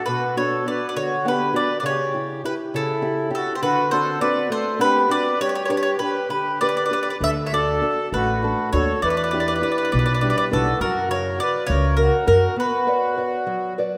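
Italian folk serenade in B minor, wistful and romantic, drifting in a rubato 6/8 at 67 BPM, where a bright, woody double-strung mandolin picks the melody up front over a reedy, airy accordion second line with slow beating and a small fingerpicked nylon-string guitar accompaniment, while a thumpy pizzicato upright bass joins at 7.2 s and drops out at 12.5 s before a brief break from 12.6 s, all heard in this excerpt through a wet concert hall reverb.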